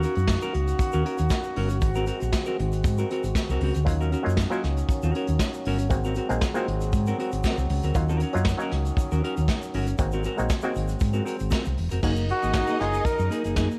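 A straight 4/4 disco groove, glamorous and sultry, rides on a vintage brush kit with dark cymbals and a punchy kick, a round, amped hollow-body bass up front, a clean, fingered semi-hollow guitar, a distant, roomy French horn section holding chords, and a grainy egg shaker in the background. From 3.8 seconds a muted, stringy clav through a combo amp adds auto-wah over the Ebm7 to Ab9 vamp. At 12.0 seconds the harmony moves to Gb69 as a lush, bowed string section enters, and moments later a flugelhorn with light vibrato, scooped notes and slapback echo takes a brief jazz-style solo, all in light reverb.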